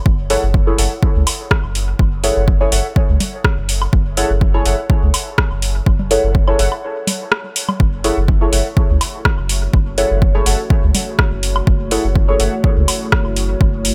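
A lightly swung 124 BPM pulse in 4/4 drives this deep, cavernous dub techno passage in F# minor, cut from a longer piece, where a punchy, overdriven electronic kick and a tape-warm deep house kit of metallic hi-hats and rim clicks sit up front over a round, soft sub bass pumping with the sidechain, while a nasal, dark chord stab with chorus, phaser and dub echo and a warbling, lo-fi synth keys riff with its own echo hover on an F#m7 chord, analog woodblock and congas add echoing accents, a short break arrives at 6.8 s, and a moody analog pad with a slow attack enters at 9.2 s.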